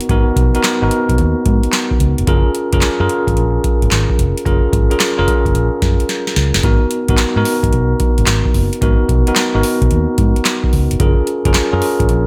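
Bouncy and punchy, this new jack swing groove at 110 BPM in G# dorian swings its sixteenths over a booming analog drum machine with a deep kick, crisp snare, metallic hi-hats and handclaps, all up front with a short room on the snare, claps and hats and a fill at 6.1 seconds. A bell-like, bright tine electric piano rides up front on G#m9 and F#maj9 chords, while a vintage fingered electric bass sits underneath, dark, round and foam-muted. A very quiet, close group handclap joins at 7.2 seconds, and the short cut of a longer piece sits in a digital ambience.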